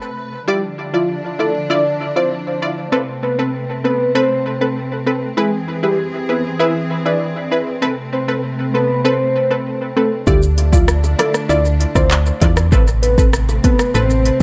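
Bowed strings open this sultry, tough dancehall excerpt with intimate, sul tasto chords that pump under sidechain compression, joined at 0.5 seconds by a round, full-bodied synth lead carrying the melody with chorus, phaser and tape echo, and by bright, detuned chord stabs with a filter pluck. At 10.3 seconds a dark FM bass and an up-front electronic afro-pop kit with a deep kick, smooth hats, handclaps, rim click and shaker arrive, with very quiet, high-tuned bongos slipping in just after. The echo-heavy mix sits in light reverb and digital ambience.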